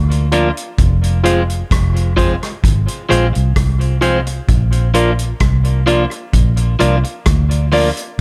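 Dub reggae with a heavy, meditative mood, this short cut from a longer piece sets a dark, round, foam-muted electric bass up front beside a vintage drum kit with a punchy kick, rolled-off top, hi-hat and rim click in a small room ambience. An electric guitar at the edge of break-up adds compressed, picked accompaniment through tape echo, while a hollow, percussive organ stab with a fast, decaying attack carries chorus and tape echo above it. The harmony moves from Bb to Fm at 0.8 seconds and returns to Bb at 4.5 seconds.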